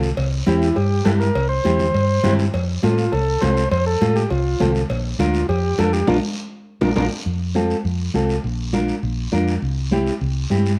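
A festive, sunny cumbia moves at a brisk, straight four-beat pace in this short cut from a longer piece. An overdriven combo organ carries the melody up front, its vintage, mellow tone colored by light vibrato, while a fingerpicked nylon-string guitar with fresh strings and a deep classical body supplies accompaniment. Underneath, a hollow-body short-scale electric bass sits forward in the mix with a dark, round, amped sound. Raspy guiro runs throughout, soft-handed congas with a thick skin and vintage, band-limited character sit in the background, and ringing metal-shell cowbell and timbales sound distant, as if in a large room. Around 6.1 seconds the band hits an accent, joined by a drum fill at 6.4 seconds, the organ and cowbell and timbales drop out near 7.0 seconds, and a new section begins at 7.3 seconds with the guitar, bass, guiro and congas. The production is dark and gently reverberant.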